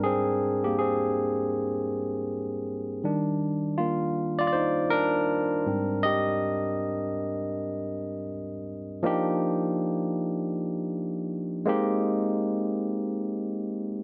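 Warm and soulful, this slow R&B fragment moves at 80 BPM in Eb major with a lilting 16th-note swing, carried entirely by a solo tine electric piano that spans Ab2 to Eb5. The piano has a barky, clean bite from its combo amp and sits up front in a small room with moderate reverb, gliding through lush major-seventh and ninth chords, opening on Abmaj9 and settling onto Ebmaj9 at 9.0 s as a new section begins, before returning to Abmaj9 at 11.7 s ahead of the 14.0 s cut.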